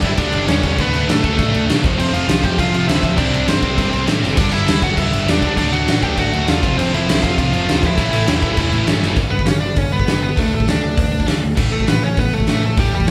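Punk rock with a rebellious, upbeat drive, this live-in-one-room excerpt sets a distorted high-gain lead guitar with tape echo over riffing from a bright cranked stack guitar, a sludgy overdriven guitar and a very quiet double-tracked heavy high-gain guitar (those two drop out at 9.2 s), anchored by a growly overdriven picked bass and an up-front big rock kit with a fat snare, punchy kick and rolled-off top that hits fills at 4.2 and 9.0 s.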